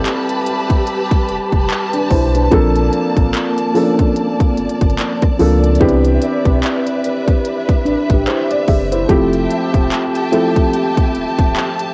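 A felt-muted upright piano opens this short excerpt of smooth, romantic contemporary R&B, its soft, dark tone sitting up front over lush bowed strings and a deep sub bass with an octave layer. At 73 BPM in 4/4 with a swung sixteenth-note feel, a trap drum kit arrives at 0.1 seconds with a hard-clipped kick, crisp hi-hats, handclaps and rim clicks. The distant string ensemble holds sustained chords with vibrato and portamento, while the mellow sine-and-triangle bass has a fast attack and a long sustain. The harmony moves through Am9, Bbmaj9, Cmaj9 and Fmaj9 in C major, and a ringing, airy handpan adds a brief meditative texture between 7.9 and 9.4 seconds. The dry sound has the character of a home cassette recording, and the piano, strings, drums and handpan all carry a cassette tape coloring.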